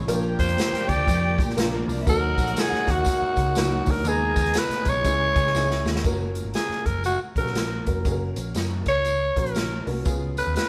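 A swung 4/4 groove from a punchy big-band drum kit drives this urgent, uptempo 1960s-style soul fragment, with a round, foam-muted picked bass, a woody, slightly detuned upright piano, very quiet ringing congas and a jingly tambourine underneath, while a lush bowed violin section and a key-clicking tonewheel organ through a fast rotary speaker sit in the background until a drum fill leads into the next section at 6.0 s, and a raspy, gritty alto saxophone with tape echo carries the melody up front in a live-sounding stone room.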